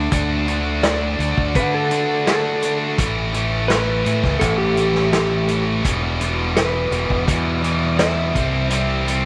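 Classic rock at 84 BPM in a straight 4/4, this short excerpt carries a swaggering, brooding mood from its opening moment. Two electric guitars drive the riff together: a biting overdriven guitar with a picked, warm edge, and a brighter, compressed, distorted guitar reaching a little higher in range. Underneath, a growling fingered electric bass sits up front, its tone bright, direct and amped with overdrive, while a vintage acoustic drum kit of hi-hat, kick and snare sounds gritty and saturated, with a tight kick, a medium-tuned snare and a rolled-off top. A clean lap steel guitar carries the melody from 0.8 seconds, its dark, compressed slide tone played with fingerpicks and trailed by tape echo. The harmony moves from D to A, then to E minor and finally C, and the whole is set in a moderate echo chamber reverb with a 2.4-second decay.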